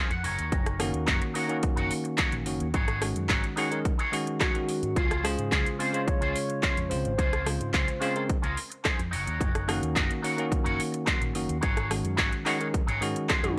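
A bright, twangy envelope-filtered electric guitar riff, opening with a clean fill, drives this groovy, sunny nu-disco excerpt at 108 BPM in Db major, set over an amped, envelope-filtered picked bass with tube saturation, a punchy overdriven electronic kick, a house kit of handclaps, metallic hi-hats, rim clicks and toms, and a bell-like tine electric piano carrying 12-bit sampler grit, sidechain pumping and tape echo, while a round, octave-layered synth lead with chorus, phaser and vibrato sings the melody from 4.4 to 8.6 seconds over chords moving from Gb6 through Ab7sus4 to Dbmaj7, before a drum fill at 13.4 seconds.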